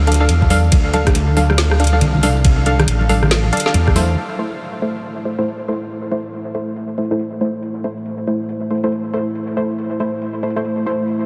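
This excerpt from a longer deep dubstep piece rides a half-time 4/4 pulse at 139 BPM with a 62% swing on the sixteenths, sitting in A minor with a dark, cavernous mood. It opens on the drop over a Dm chord, where a heavy, saturated wobble bass with a sawtooth-and-sine tone and chorus sits up front alongside an overdriven, knocking electronic kick drum, both falling away by around 4.2 seconds. A garage drum kit with a woody snare, metallic hats, ride cymbal and rim click runs throughout, its hats, cymbals, snare and small-room sound all softened by low-pass filtering, while soft-handed, thick-skinned congas with dub echo murmur in the background during the opening stretch. Filtered dub chord stabs, muted and plucky with detuned saws, chorus and dub echo, stay up front across the whole recording. At 4.2 seconds the harmony moves to Am and a moody analog pad of detuned square, saw and triangle waves with a sub octave and a moving notch fades in slowly under chorus. 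A huge, moderate ambient reverb with a long tail soaks the mix in a dreamy haze.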